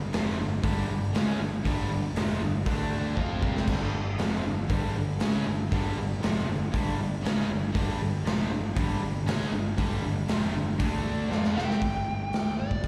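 A driving, aggressive hard rock cut from a longer piece opens at 118 BPM with three picked guitar riffs on G5, D5 and Csus4 chords (a crunchy overdriven part, a faint double-tracked high-gain distorted one, and a background overdriven guitar with slapback echo), over a growly fuzz bass and an up-front, gritty garage drum kit with a punchy kick that fills at 3.2 and 11.3 seconds, before a nasal parked-wah lead guitar with slapback echo enters at 11.6 seconds, all heard as a live gig through the venue's PA in a recital hall's reverb.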